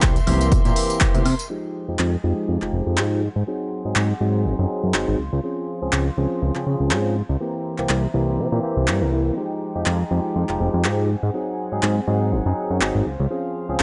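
A fat, thick sawtooth bass sits up front with a detuned, sustained tone and a fast attack, pumping against the beat and run through a low-pass filter. This filtered disco house excerpt in F minor moves at 122 BPM with a lightly swung 16th-note feel, and its mood is sensual and nostalgic. A bright, barky tine electric piano plays accompaniment through a combo amp, clean and up front, colored by phaser and the same pumping and filtering. Far behind it, a rich studio violin section holds soft-attacked, sul tasto chords that float in the background. The overdriven analog drum machine supplies handclaps, hi-hat, tambourine and woodblock throughout, while a punchy, tape-toned layered kick appears only until 1.1 s and band-limited vintage tambourine and congas linger in the background until 1.5 s. From there a filter sweep runs to the end at 13.8 s over a cycling Fm9, Ab7, Dbmaj7, C7 progression, all framed by digital ambience and a dry, gritty hardware sound.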